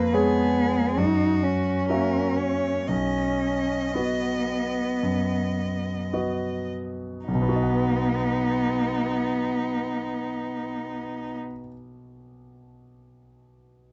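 Rubato phrasing in 4/4 carries this slow romantic movement for piano trio, with the tempo ranging between 51 and 72 BPM and slowing through the opening 7.3 seconds. The mood is serene, set in B major and tuned to A4 = 441 Hz. A clear, close violin sings the melody with smooth, even bowing and vibrato, while a rich cello sits up front on a second line, louder than the violin, with a soft attack, portamento and expressive vibrato. The concert grand piano supplies the accompaniment with deep bass and a vintage tone, carrying on alone after the strings stop at 11.4 seconds until 13.9 seconds. The harmony moves from C#7/E# to F#7 and settles on B, and light reverb frames a dark, warm production that holds everything under 8.0 kHz. It is an excerpt from a longer piece.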